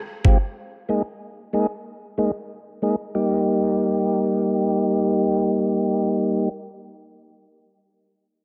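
A light reverb gives this short dancehall excerpt some air around a tonewheel organ, which sits up front with a clear, lightly overdriven tone, audible key click, vibrato and a slow rotary speaker. At 93 BPM in a straight 4/4 and Eb major, the mood is sunny and bouncy. The organ enters at 0.2 seconds as accompaniment, moving from Fmadd9 to Absus2 under a filter sweep until 3.1 seconds, when the harmony arrives on Eb.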